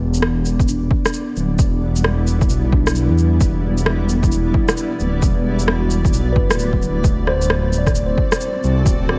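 Set in a lightly reverberant space under a bed of vinyl crackle, this nocturnal, ghostly future garage excerpt swings its sixteenths as a granular cloud pad with a blurred, slow-blooming haze and gritty 12-bit character pumps against a deep, rumbling detuned saw bass that sits up front. A mellow tine electric piano enters at 0.2 seconds with clean, warm accompaniment trailed by dub echo, while overdriven electronic shaker and rim clicks and a punchy, layered kick arriving at 0.6 seconds drive the groove. The harmony rests on Em7 before shifting to D7 at 7.0 seconds.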